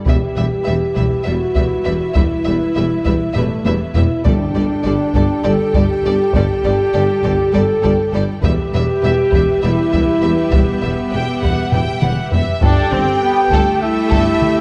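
Driven by a taiko ensemble struck with heavy sticks, this cinematic orchestral cue moves at 201 BPM in eighths across a straight 7/8 metre, sounding adventurous and triumphant in G major, with drum fills around 3.4 and 11.7 seconds. Up front, a mellow, roomy French horn section holds sustained chords over a rich, even symphonic string bed, as the harmony shifts between Em and Gsus2. A clear, focused violin section carries the melody with vibrato while a second, lush violin line sits in the background, and a smooth, very quiet viola section fills in accompaniment. The low end is anchored by an intense cello section, a double bass section and a mellow tuba, with a brief, very quiet timpani entry on G2 from 4.3 seconds. At 12.6 seconds an airy, distant concert flute and a background trumpet section with gentle stabs join for the closing bars of this fragment of a longer piece, all set in a dark production with moderate scoring stage reverb.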